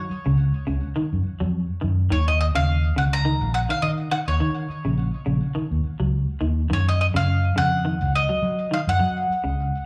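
Heard live through a club PA with light reverb, this defiant, funky afrobeat passage, cut from a longer piece, moves at 104 BPM in Eb minor with a gently swung sixteenth feel, as a dark, round, amped fingered electric bass sits up front beneath a double-strung, picked bowl-back mandolin melody coloured by slapback and tape echo, while a bright, clean semi-hollow electric guitar plays arpeggios through ensemble chorus and slapback echo over chords that move from Gb5 to Eb7(no3) at 2.1 seconds and back to Gb5 at 6.7 seconds.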